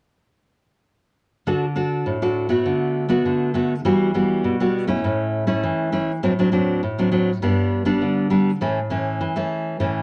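Samba in D major at 101 BPM, festive and sunny, this short passage cut from a longer piece features a lone fingerpicked nylon-string guitar from 1.5 seconds, playing classical-style accompaniment through a progression that moves from D through Bm7/D, Emadd9 and A to D7/A, G and back to A. The guitar sits up front with a full-bodied tone, fresh strings and audible finger squeak. A moderate studio reverb and a dark, warm production round out the sound.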